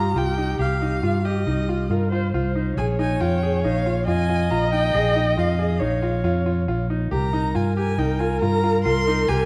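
Set in an uneven 5/4 with a straight feel at 138 BPM, this pensive, restless piece of contemporary chamber music in Bb dorian moves over Cm, Bbm7 and Cm7 chords. A single bowed violin carries the melody high in its range, its tone rich and smooth with vibrato. Beneath it, one dark viola plays a second line sul tasto, nasal and woody with its own vibrato. A bright concert grand piano spins short-sustained, polished arpeggios in the middle register. A round, up-front fretless electric bass anchors the low end with an amped, mellow voice. In the background, a glockenspiel struck with soft plastic mallets adds bell-like, ringing touches at 0.6 seconds and again from 4.9 seconds, all within a moderate concert hall reverb and a dark production that is cut from a longer piece.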